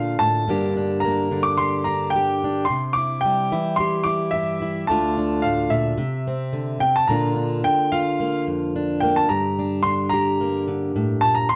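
A straight 4/4 pulse at 109 BPM carries this short folk fragment, cut from a longer piece, with a bittersweet, wistful mood. A fingerpicked, plugged-in steel-string acoustic guitar provides warm accompaniment from the low register up through the middle, while a bright upright piano carries the melody high above it. The piano sounds woody and polished, with long sustain and a plate reverb on its brilliant tone. Both instruments sit up front in a moderate studio room, playing together from 0.0 s until the fragment ends at about 11.6 s. The harmony moves through Gm, C, Dm and C, then shifts at 7.1 s into a second passage of Bb and Gm.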